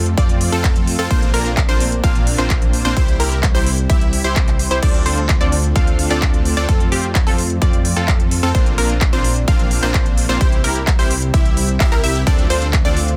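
A straight 4/4 pulse at 129 BPM drives this powerful, anthemic festival progressive house excerpt, where an overdriven, punchy electronic kick sits up front beside a pop drum kit of crisp hats, handclaps and crash cymbal, while a thick detuned saw bass, an airy supersaw stab riff and a background unison pluck arpeggio, both with tape echo, pump against the kick over a warbling, gritty vintage unison pad as the chords cycle F, Bbadd9, C and Dm7 in a dense, heavily limited mix with little reverb.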